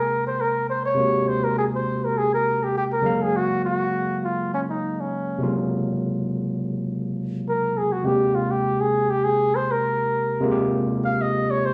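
Soul at 102 BPM in 4/4 with a light sixteenth-note swing, this short excerpt in Ab major feels lush and smooth. A breathy flugelhorn carries the melody as a jazz-style solo from 0.0 to 11.7 seconds, up front, with light vibrato and scooped notes giving its tone a soft, human edge. Beneath it, an overdriven tine electric piano supplies the accompaniment through a combo amp, its barky, gritty bite sitting equally forward in the mix. The harmony moves from Abmaj9 to Gbmaj9#11 at 3.0 seconds and returns to Abmaj9 at 8.1 seconds. A small room ambience with light reverb frames the two instruments intimately.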